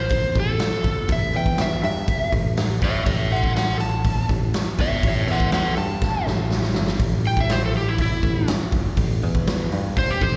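Gritty and swaggering, this short live cut of blues rock power trio and southern rock in A major at 122 BPM, heard through a venue's PA, features a dark, overdriven slide guitar soloing up front with slapback echo and digital delay, a growly picked electric bass, and a raw garage drum kit with a punchy kick, medium-tuned snare and saturated, rolled-off sound that adds a fill at 6.0 seconds.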